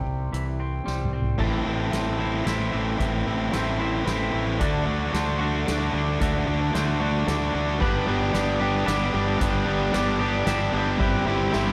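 In a straight 3/4 feel, this brooding, melancholic post-rock passage opens with very quiet clean arpeggios from a hollow-bodied semi-hollow guitar and a twangy fingered guitar over a pedal steel's soft sustained chords with volume swells and slide, while a growly fuzz bass anchors the low end and a soft-mallet drum kit with dark cymbals and a boomy kick enters at 0.3 s, adding a fill just before the build-up. At 1.4 s a bright, overdriven picked guitar riff surges up front, and at 7.8 s a second, scooped and compressed distorted guitar riff joins in the background, the mix sitting in light reverb and small room ambience.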